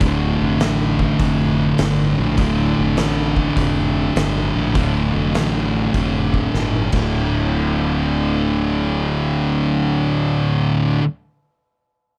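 This excerpt of stoner and doom metal opens with everything at once: two thick fuzz guitars pick a heavy, hypnotic riff in D minor over an overdriven, fingered electric bass and an oversized, low-tuned drum kit. The tempo sits at 101 BPM in 4/4 with a swung eighth-note feel, giving the riff a lumbering, rolling gait. One guitar sits up front with a distorted, fuzzy edge, while the second, darker guitar lurks in the background, and the bass adds a round, overdriven fuzz up front in the mix. The drums carry a fat snare, punchy kick and dark cymbals in a bright stone room that pumps and saturates around the kit, and a fill at 6.5 seconds leads into a brief shift from the D minor chord to a bare D5 before the drums stop at 7.0 seconds. Guitars and bass carry on alone until the cut at 11.0 seconds, the sound staying dry and close.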